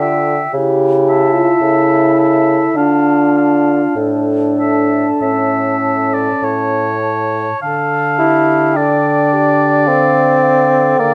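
A wind quintet opens together on a serene, lyrical romantic movement in triple time, with an airy, hollow flute carrying the melody close to the microphone over a smooth oboe second line. A dark, distant clarinet sits in the background while a warm French horn fills out the accompaniment and an up-front bassoon with light vibrato holds the bass, horn and bassoon sounding most prominent. The rubato playing moves into a new section at 7.6 seconds in this short passage cut from a longer piece, framed by light reverb and close, detailed sound.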